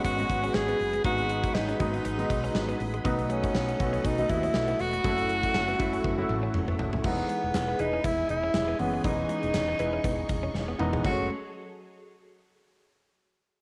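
A breathy, close-miked tenor saxophone with light vibrato and scooped notes carries the melody up front in this urgent, moody 1980s-style pop excerpt at 120 BPM in F# dorian. It is backed by a punchy gated drum kit with bright cymbals, a round fretless bass with ensemble chorus, warm concert grand piano accompaniment with a deep bass, a silky string machine in the background, a very quiet clean electric guitar riff and nasal polysynth stabs, all steeped in spring reverb and the sound of a home recording on cassette, with drum fills at 6.0 and 10.5 seconds.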